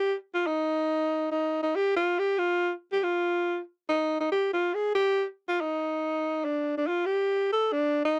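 A brisk 4/4 swing at 187 BPM, with the eighth notes swung at 63%, carries this short jazz fragment cut from a longer piece and tuned to A4 = 441 Hz. A lone breathy tenor saxophone plays up front from 0.0 to 8.2 seconds, moving between D4 and A4 with a soft attack, scooped notes, light vibrato and a smooth, whispered top. The dark, warm production and light reverb give the solo horn an intimate, swinging mood.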